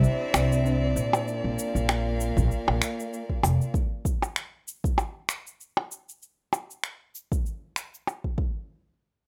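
A light reverb sits over a rough, homemade-sounding mix in this playful, delicate folktronica excerpt, moving at 97 BPM in 4/4 with a gentle swing on the sixteenths. A clear chamber string quartet holds sustained chords over Cadd9 and then Bb, its bowing airy and intense with vibrato, while a picked steel-string acoustic guitar plays brief arpeggios in the background, treated with a filter sweep and tape echo. An upright bass enters just after the start with a woody, growly pizzicato, placed up front. Electronic cabasa, finger snaps and percussion blips run through nearly the whole clip in a small room ambience, joined at 2.4 seconds by a deep, tape-tinged electronic kick drum that sounds re-recorded in a large room. By 3.7 seconds the strings have stopped and the harmony drops out, leaving the kick and the electronic percussion to carry on alone.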